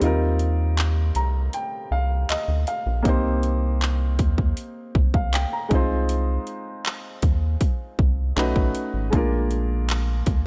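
Moody and sensual, this contemporary R&B excerpt moves at 79 BPM in 4/4 with a straight feel, set in C minor and tuned to A4 = 444 Hz. It opens on a break, with the baby grand piano playing a fill from 0.8 to 3.1 seconds, its tone polished and present, over chords that begin on Eb69 and settle into Cm7 and Fm7/C before passing through B9 to Bb7. A rubbery square-wave bass sits up front, hollow and bouncy, with a filter pluck, a moving notch, a fast attack and a dark, sustained body. The trap drum kit is electronic and produced, pairing a hard-clipped kick with metallic hi-hats and handclaps up front. The sound is dry, with little reverb, and it cuts off as a fragment of a longer piece.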